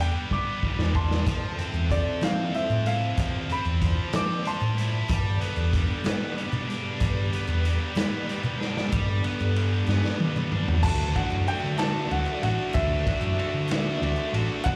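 Heard as a live club gig through the venue's PA, this wistful, jangly indie rock fragment in 6/8 opens with a brilliant, woody upright piano carrying the melody with audible action noise and slapback echo; the piano falls away at 5.7 seconds and returns at 10.8 seconds. Beneath it, a slightly broken-up, lo-fi guitar through a small old amp with chorus and a scooped, high-gain distorted guitar both play riffs, while a round, punchy hollow-body bass holds the low end. A raw, gritty garage drum kit enters with a fill at 0.3 seconds, joined by a very quiet, swirling phased string machine sustaining chords and faint, distant group handclaps.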